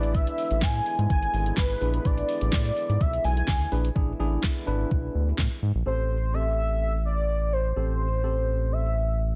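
Confident yet bittersweet, this dance-pop excerpt in A minor moves at 126 BPM, as a velvety, detuned synth lead with chorus and tape echo carries the melody over a deep, round analog bass, a worn, slightly out-of-tune electric piano, and a classical-style French horn section, the latter three pumping with sidechain, while a smooth R&B kit with a knocking kick, fat snare and metallic hats drives until 5.5 seconds, alongside a grainy, very quiet egg shaker that stops at 4.0 seconds, before the harmony shifts from E7 to Am7 at 5.9 seconds under a dense, heavily limited modern master.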